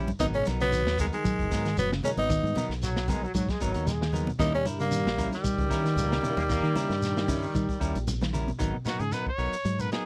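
A raspy, gritty tenor saxophone carries the melody up front in this defiant, driving afrobeat excerpt in G# minor at 114 BPM, backed by a tight, brilliant trombone section and a dark, scooped trombone in the background, while a crunchy, saturated breakbeat kit, fingered bass, close thin-skinned congas and a grainy shekere push the groove over G#m9 and D#7b9. A mellow electric guitar plays arpeggios through spring reverb as a hollow-body guitar adds clean stabs. After a drum fill at 7.9 seconds, a brilliant trumpet with scooped notes takes a short solo from 8.9 seconds in this dry, close 1970s-style studio sound.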